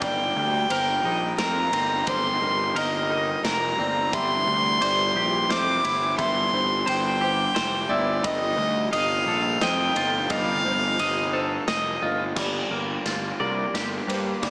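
A rich, floating bowed violin sings up front through slapback echo until 11.7 seconds in this cathartic, melancholic post-rock excerpt in 3/4, carried by twangy chorused clean electric guitar arpeggios, a round fuzz-overdriven picked bass, a muted, boxy felt upright piano arpeggiating softly in the background, a very quiet woody string section holding dark sustained chords, and a punchy big rock drum kit whose fill drives a build-up from 12.4 seconds, all set in a concert hall reverb with a small-speaker character.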